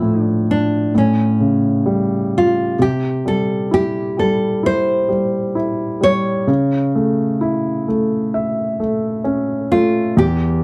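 A grand piano and a nylon-string guitar begin together in this brief fragment of a slow pop ballad, moving at 65 BPM in a straight 4/4 with an emotional, longing mood. The piano carries the accompaniment across a broad span from E2 to E5, its tone warm, intimate and natural, with audible action noise, and it sits up front. Alongside it, the fingerpicked guitar sings the melody between C#4 and C#5, warm, deep and classical in character, with finger squeaks and a slapback echo. The harmony opens on Dmadd9/A and A7, then shifts at 2.8 s into a new passage built on C before settling onto A/C# at 6.5 s. The whole fragment has the dry, close feel of a 1970s-style studio recording, touched by only a light reverb.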